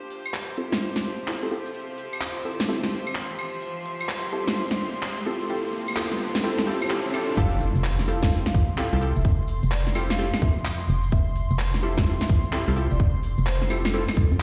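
UK garage two-step at 128 BPM with a late-night, soulful mood, where a smooth background pad, floating strings and grainy, 12-bit-tinged chord stabs with dub echo build over crisp hats, a cracking snare, claves and handclaps alongside a riser and a filter sweep on the stabs, until the drop at 7.4 seconds brings in a tight kick, a hollow, dark FM bass with tube saturation, a mellow vibraphone melody with dub echo and a faint tube shaker, all set in a big room with vinyl crackle on an Fmaj9 harmony.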